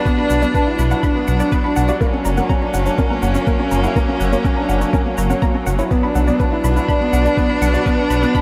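Intimate and hypnotic, this short cut from a longer piece of piano and strings electronica moves in a straight 4/4 over a Bm to F# and back to Bm progression. A felt-muted upright piano carries the riff with a soft, mellow tone, its thick felt and audible action noise giving it a close, hushed character, dressed in lush chorus and delay. Beneath it, a dark string quartet holds sustained chords with vibrato and portamento, one player per line, up front and pumping against the kick, while a deep, rumbling detuned saw bass beats and throbs with the same sidechain pumping. An electronic kick drum, pitched down and muffled into a thumpy pulse, sits up front, with a layered electronic shaker tucked far behind it. In the background, a round analog pluck spins arpeggios with a filter sweep, chorus and delay, and the whole dreamy mix is soaked in a moderate cathedral reverb.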